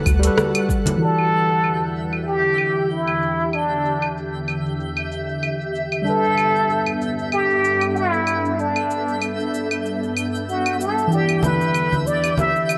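A moderate concert-hall reverb bathes this smooth, relaxed sunset chillout excerpt, cut from a longer piece. A worn, slightly out-of-tune electric piano, lightly overdriven through a combo amp, and an ethereal, detuned airy pad with ensemble chorus carry the chords, both under filter sweeps from 1.0 s, while a twinkling granular layer adds bright octave-up shimmer high above. An overdriven deep house kit with metallic hats, cabasa, claves and rim click swings gently, a deep electronic kick sounds only from 0.1 to 0.8 s, and ringing hard-hand congas appear briefly at the start and again near the end, as a breathy, intimate plunger-muted trumpet with wah-wah, vibrato and scooped notes takes the up-front jazz solo through digital delay from 1.0 s.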